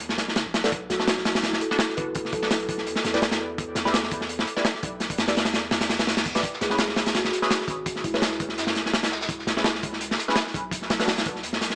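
A gritty, saturated breakbeat kit sits up front in this raw, atmospheric drum and bass and jungle excerpt at 168 BPM in C# phrygian, its punchy kick, medium-tuned snare and hi-hat sounding dark and rolled-off, as if played in a small room. Underneath, a long, deep 808-style sine bass decays in the background, while muted, nasal dub chord stabs built from detuned sawtooth tones flicker through a phaser, subtle chorus and dub echo, following a Bm7, E5 and C#7(no3) progression. A soft, woody kalimba plays a ringing, mellow melody in two short phrases, the first at 0.9 seconds, its notes trailing off into dub echo. A very quiet electronic reverse cymbal leads into 6.4 seconds, where a second, mid-forward breakbeat kit of hi-hat and snare joins far back in the mix. The whole track is soaked in echo with moderate plate reverb, and it has a small-speaker character.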